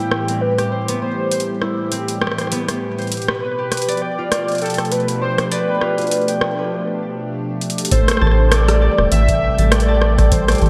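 IDM excerpt, melancholic and eerie with a light swing, where a velvety synth lead sings over a swirling phased pad, bright ringing harp arpeggios under a filter sweep and a booming drum machine with metallic hats until a break and fill give way at 7.9 seconds to a rubbery square bass and a deep electronic kick, joined moments later by a faint flickering grainy texture, all bathed in lush hall reverb and bright 1980s-style digital sheen.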